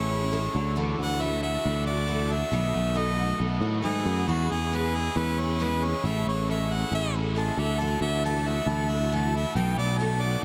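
Hopeful and jangly, this 10.4-second folk rock and heartland rock passage at 136 BPM in 4/4, tuned to A4 = 435 Hz, features an up-front, clear harmonica soloing over Amaj7, Dadd9, B7 and E6 changes, trailed by diffuse ambient delay, while a shimmering, octave-doubled picked twelve-string acoustic guitar with ensemble chorus picks out accompaniment, a biting, double-tracked overdriven guitar plays a riff, a round picked electric bass anchors the low end, and a very quiet, shouting tonewheel organ with key click and rotary speaker holds sustained chords, all in a dreamy mix soaked in a huge 5.0-second reverb.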